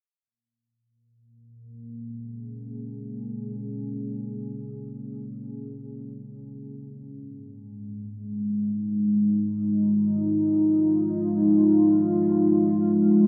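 Ambient in free time and Bb minor, this meditative, deep excerpt features a single dark, detuned pad that enters at 1.5 seconds to hold sustained chords from Bbm7 to Fm7 with chorus, a filter sweep and a slow attack, set up front in a huge, wet reverb.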